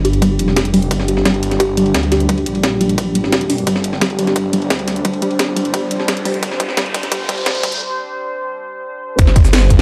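Dark and aggressive, this fragment of technical drum and bass in G minor runs at 174 BPM as a build-up. A deep, moody ambient pad pumps against the kick and a warbly, dusty lo-fi pluck spins filter-swept arpeggios until 7.7 seconds. A snarling, growling distorted saw bass sits up front, and two layered drum kits pair a gritty, pitched-up breakbeat sampler kit with cracking snares, bright hats and cabasa over a tight, overdriven kick. A drum fill and an electronic riser lead into a break at 7.8 seconds, in a dark production with light digital ambience.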